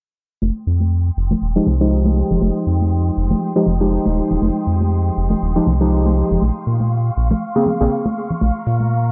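A hypnotic, smooth deep house groove in 4/4 with a light swing on the sixteenths opens at 0.4 seconds, as a round, deep analog bass and close, dry congas start together. Chords move from Fm9 to Bbmadd9 at 6.4 seconds, carried by a silky, slow-attack string machine that enters at 0.8 seconds, sitting soft and far back with a warbling ensemble chorus. Up-front analog keys play decaying stabs from 1.6 to 7.9 seconds, their detuned, wave-folded tone treated with chorus, tape echo and a low-pass filter. Filter sweeps run through the bass and keys across the whole passage, while a faint, overdriven metallic hi-hat appears only briefly near the end. The sound is dry and gritty, with light reverb and a digital ambience, in this short cut from a longer piece.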